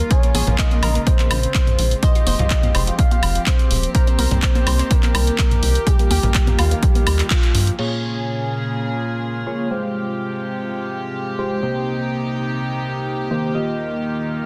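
Progressive house with a driving, bittersweet mood, cut from a longer piece, where a punchy, up-front kick sits alongside a tight, dark sawtooth sequencer bass and a house kit of crash, handclaps, woodblock and low-pass-filtered hats, the bass and kit riding sidechain pumping beneath a soft, round octave-layered lead with chorus, vibrato and delay, while a detuned analog pluck arpeggiates in the background and overdriven electronic congas and toms sit dry behind it. A dark, floating bowed string section holds sustained chords throughout over a Bbm7–Fmadd9–Cm7–Ebadd9 cycle. After a band accent at 7.3 seconds, the drums, bass and lead drop away and a glossy, retro chorused polysynth takes over with up-front stabs from 7.8 seconds, all under light reverb and a dense, heavily limited master.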